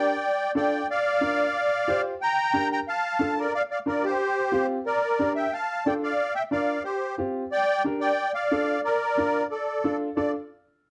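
Latin music with a fiery, danceable mood moves at a brisk 181 BPM in a straight 4/4, set in D minor and tuned slightly under standard pitch. A musette accordion carries the melody throughout the 10-second clip, its reedy, shimmering tone with the characteristic musette tuning sitting up front and sounding dark yet smooth. A warm upright piano plays the accompaniment in the middle register beneath it, woody and natural with a long sustain, also placed up front but a little lower in level. The harmony cycles repeatedly through D minor, B-flat, C suspended fourth and G minor before settling back on D minor near the end. A moderate studio reverb and a dark, warm production give the short passage a cohesive glow.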